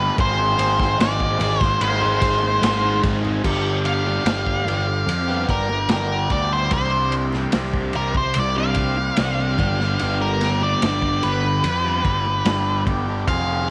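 Psychedelic rock with a hypnotic, trippy pull, where a dark, up-front octave-fuzz lead guitar with slapback echo takes a solo from 3.5 s over a double-tracked, phased crunchy rhythm riff, a punchy fuzz bass, a buzzy vintage combo organ holding very quiet chords, a gritty small-room breakbeat kit with a rolled-off top that fills just before the solo, and faint, ringing high-tuned congas, all in light reverb as the chords move from G to Csus2 and back.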